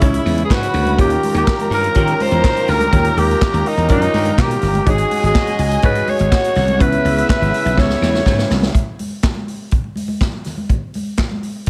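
A glamorous, danceable disco groove at 124 BPM opens with a raspy, growling alto saxophone up front over a bright, punchy slap bass, a vintage drum kit with handclaps, dark, lush bowed strings and a clear concert grand piano in the background, a very quiet tonewheel organ with key click and slow rotary speaker, and soft-handed congas, while a tube-saturated horn section adds stabs from 1.0 s over C#m7 and D#9 chords, until a drum fill at 7.8 s leaves the drums and congas alone before the cut at 11.7 s.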